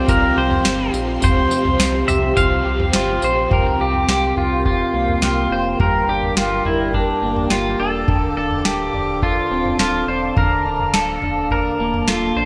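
A bright, 1980s-style digital production sits in a moderate plate reverb, giving this dream pop fragment a dreamy, floating glow from a longer piece. Up front, a twangy, clean pedal steel guitar carries the melody with fingerpicks, slide and volume swells, dressed in lush chorus, shimmer reverb and digital delay. Beneath it, an electric guitar through a small old amp plays slightly broken-up, picked arpeggios with the same chorus, shimmer and delay, while an ethereal, airy pad holds mellow sustained chords through ensemble chorus and phaser. A bright, double-tracked overdriven guitar hovers in the background with tremolo until it drops out at 4.0 seconds, and a deep, full sub bass with octave anchors the low end. A booming analog drum machine with a deep kick, crisp snare, tambourine and toms runs through gated reverb as the harmony moves from Csus4 to C7sus4 at 3.5 seconds, then through Gm7 and Dm7 to Bbmaj7/D.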